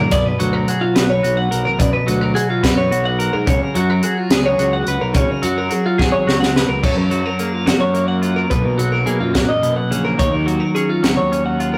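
Wistful yet playful, this short math rock and Midwest emo passage, cut from a longer piece, moves in a straight 6/8 feel. Two twelve-string electric guitars sit up front with a bright, twangy, clean, compressed picked tone: one carries the chordal accompaniment while the other spins arpeggios higher up. A fuzz-driven fingered electric bass adds a growly, overdriven low end beneath them. A crisp fusion drum kit, airy and polished with a high-tuned snare and punchy kick, works across hi-hat, crash and splash cymbals, and delivers a fill from 6.0 to 6.8 seconds that ushers in a second section built on lusher major-seventh and ninth chords. The whole take carries a rough rehearsal-room character with light reverb and warm saturation.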